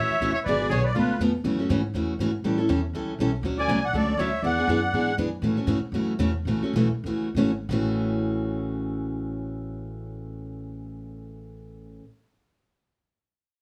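Acoustic string swing in the jazz manouche style, lively and swinging, cut from a longer piece: a reedy, shimmering musette accordion carries the melody up front in two short bursts, from the start to 1.2 seconds and again around 3.6 seconds, with a bright trumpet, touched with vibrato, adding a second line alongside it. Underneath, a picked steel-string acoustic guitar with fresh strings and audible finger squeak plays accompaniment throughout, warm and up front, while a woody, thumpy upright bass with gut strings anchors the low end. The groove slows down between 5.4 and 7.7 seconds before a new section begins, all set in a moderate studio reverb.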